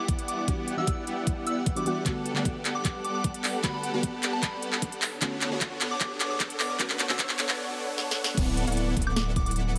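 A euphoric, playful future bass excerpt at 152 BPM in a half-time D major feel opens with a pure FM synth bell melody, a soft, round pluck with chorus, background strings with vibrato and huge detuned supersaw chords under a sweeping low-pass filter, all pumping against the sidechain over chords from Em9 through A13sus4 to Bm9. Up-front overdriven drums, a knocking electronic kick and a trap kit with sharp snare, crisp hats, handclaps, woodblock and crash, drive a build-up with fills and very quiet electronic risers and swells. At 8.4 seconds the drop lands on D69 as a thick, saturated sub bass on D1 enters, with light reverb over the mix.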